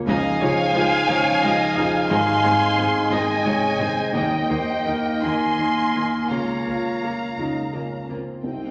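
Hopeful and uplifting, this slow cinematic piece in a rubato 6/8 at 54-60 BPM (dotted quarters) places a lush, vibrato-rich violin section melody up front over mellow French horn chords and a muted, intimate felt-muted upright piano, while an airy concert flute, a clear, punchy clarinet and a second violin section in the background carry second lines, and very quiet violas, focused cellos and double basses fill out the lower range, with round, soft-mallet timpani sounding from 2.1 s to 5.2 s, the whole set in a wet scoring-stage reverb as the harmony moves from Dbadd9 through Ab and Eb to Bbm/Db.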